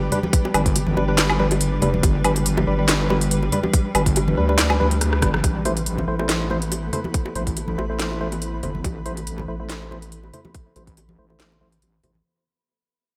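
A half-time 4/4 groove at 141 BPM with a light 16th-note swing drives this brooding, cavernous deep dubstep excerpt in A minor, as a tight electronic kick and a garage kit of cracking snare, crisp hats, handclaps, rim click and woodblock sit up front with tape-warm, large-room character, while ringing, close congas and bongos trail dub echo in the background. A heavy, saturated square-and-sine wobble bass anchors the low end beneath hollow, nasal organ stabs with chorus and dub echo, and a blurred granular cloud pad and a flickering, grainy texture drift behind them. After a drop that opens the excerpt and a drum fill at 5.0 seconds, the harmony moves from G to Am at 5.4 seconds, where a filter sweep begins on the organ stab and the music begins to fade out.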